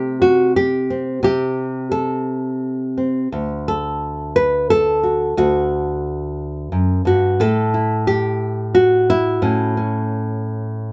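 A lone nylon-string guitar opens this short folk excerpt, fingerpicked in a loose, rubato waltz time that feels nostalgic and warm. Its tone is bright yet full-bodied, with a deep classical character, and it sits up front in a room with light reverb, giving the sense of a live performance. The harmony moves from C5 at the start to D at 3.3 seconds, then settles on A at 7.4 seconds. The playing ranges from low bass notes to the upper middle of the instrument. Small finger squeaks on the strings add an intimate, human touch before the clip ends at 10.9 seconds.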